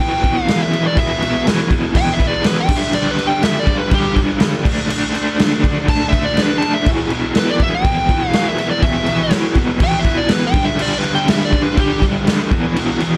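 A crunchy, overdriven electric guitar riff and a fuzz-soaked lead guitar open this menacing, swaggering slice of garage rock in E minor, with a raw acoustic drum kit joining at 0.2 seconds. The tempo sits at 122 BPM in a straight 4/4. The double-tracked rhythm guitar is bright, picked and up front, treated with tremolo as it grinds out a low riff over power chords on E, G and D and an E minor chord. Above it, the dark, compressed fuzz lead carries the melody in a higher register and stops at 12.0 seconds. The drums sit up front in a bright stone room, with a punchy kick, a medium-tuned snare and crash cymbals, their tone smooth with a rolled-off top. Light reverb frames the short section, which is cut from a longer piece and ends at 13.2 seconds.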